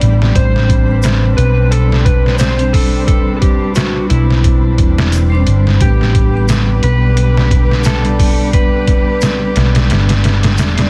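Gritty, pitched-down sampler drums with a thumpy kick and studio reverb sit up front beside a round hollow-body electric bass in this smoky, dark trip hop fragment, while a ringing vibraphone with harmonic tremolo accompanies over an Am11 chord, a slightly broken-up slide guitar carries the melody through tape echo from 0.4 s, and muted con sordino strings with 12-bit sampler grit, a very quiet flickering granular texture and a bright tube shaker hang in the background over vinyl crackle and a dense, heavily limited master.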